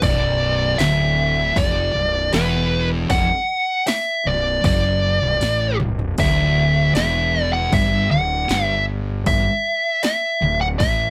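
Heavy and sludgy, this stoner and doom metal passage pairs a dark, up-front fuzz lead guitar melody with a double-tracked fuzz guitar riff, growly overdriven fingered bass and a punchy, overdriven analog drum machine whose fill at 5.4 seconds carries the Bm harmony to a D5 chord, all in a light room reverb.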